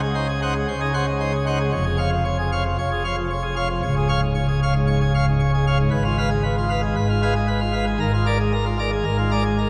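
A full pipe organ plenum, bright with mixtures, baroque voicing and crisp chiff, sits up front and plays alone across this majestic, brilliant classical toccata fragment in Db major at 114 BPM in a straight 4/4, its harmonies moving from Ab7/Db through Fdim/Ab to Bb7/Ab over 9.7 seconds, all bathed in a long, wet cathedral reverb.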